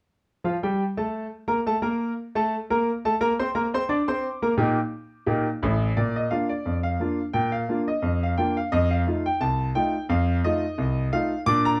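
A dark, gently reverberant studio sound frames this cheerful, playful ragtime excerpt in Bb major at 87 BPM in a lightly swung 2/4, where a clear, open concert grand piano sits up front with deep bass, playing solo from 0.4 to 11.8 seconds across a range from A1 to D6 and moving into a new section at 6.0 seconds that passes from Bb to F7.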